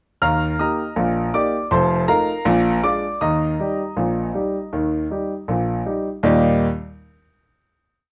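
Jaunty and playful, this brief ragtime piece in Eb major at 80 BPM in a straight 2/4 features a solo grand piano, clear and up front, playing the tune in filled octaves over a stride bass through an Eb, F7, Bb7 and back to Eb progression before landing on a final chord at 6.2 seconds, all captured with close, detailed microphones and light reverb.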